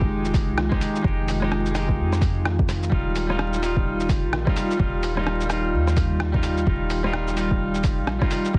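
Wistful and melancholic, this short future garage excerpt moves at 128 BPM in 4/4 with a swung sixteenth feel, drifting from Fm7 to Ebadd9 at 2.9 seconds. A bright, twangy clean electric guitar with analog delay and sidechain pumping plays accompaniment over a warbling, nostalgic pad of detuned sawtooth and triangle tones, treated with chorus, phaser, reverb and pumping and set in the background, while a deep, round, sine-like 808-style bass anchors the low end. A punchy, layered electronic kick is joined at 0.2 seconds by a muffled, pitched-down sampler-style kit of hi-hat, rim click, shaker and a softly clipped snare, all inside digital ambience with vinyl crackle and a dense, heavily limited modern master.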